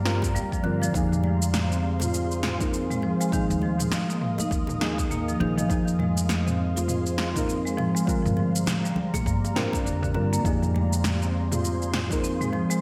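Mystical and meditative, this short excerpt from a longer piece is organic downtempo at 101 BPM in 4/4, with a 16th-note swing and an F dorian colour built on Gm7, Fm and Ebsus2 chords. A mellow marimba played with soft mallets carries the arpeggios, its rosewood tone round, woody and mid-forward, with delay trailing each note. Alongside it, a deep, dark chord stab with a nasal, full-bodied pluck brings decaying accompaniment coloured by chorus, cassette tape character, delay and sidechain pumping. Above, an ethereal, airy pad holds detuned, slow-attack chords with a moving notch, ensemble chorus and its own reverb, also pumping. A thumpy pizzicato upright bass with steel strings anchors the low end, while an overdriven electronic kick and a layered deep house kit with a punchy snare, shaker and toms, treated with studio and gated reverb, drive the groove alongside very quiet, close and dry bongos and congas. 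The whole mix sits in a moderate plate reverb with a bright 1980s-style digital sheen.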